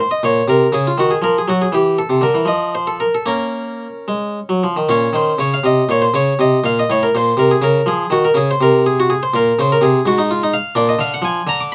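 In a 6/8 with a free, rubato pulse of roughly 72-86 dotted-quarter beats per minute, this excerpt from a baroque-style suite movement for solo harpsichord unfolds in Bb minor, tuned to A4 = 439 Hz. The mood is flowing and introspective, and the excerpt lasts about 11.7 seconds. The single Flemish-style harpsichord, strung with one set of strings, sounds bright and plucked, with a mid-forward character, and it spans Ab2 to D6. Its harmony moves through Bbm9, Ebmadd11 and C/E before settling on Bbm, and a second phrase beginning near 4.9 seconds passes through Adim and back to Bbm9, closing on a Bb major chord at 10.8 seconds. Close, detailed microphones place the instrument up front in a dry room, so each string's attack comes through clearly.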